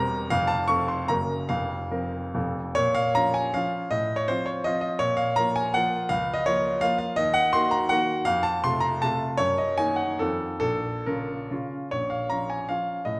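Heard through a wet recital-hall reverb in a dark, warm production, this nostalgic, wistful fragment of a longer classical piece features a solo baby grand piano, clear, polished and up front with short sustain, spanning E1 to Db6 in a romantic triple-time dance in 3/4 with dotted rhythms and free rubato between 128 and 174 BPM in Bb minor, its harmony moving through F and Gb to reach Bb minor at 2.8 seconds and later passing from F7 to Bb minor at 10.6 seconds.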